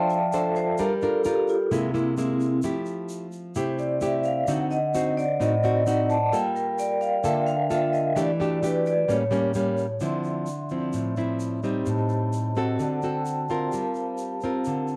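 A straight 4/4 bossa nova pulse at 130 BPM carries this wistful, melancholic piece in D minor, tuned to A4 = 442 Hz and cut from a longer work. A fingerpicked nylon-string guitar sits up front with an acoustic, classical character, while a grainy, bright egg shaker sits much lower in the mix with a live-room sound. The vibraphone, struck with medium hard mallets, has a metallic, ringing tone with fast motor vibrato and plate reverb, and it takes a solo over the first 10 seconds before returning with a short fill at 12.3 seconds. The harmony moves through rich jazz colours, opening on a rootless Bbmaj9 and passing through chords such as Caug7, D7b9 and A7b9 before settling toward Dm9 and closing on Gm11. The whole take has the intimate feel of a home cassette recording in a small, wet room.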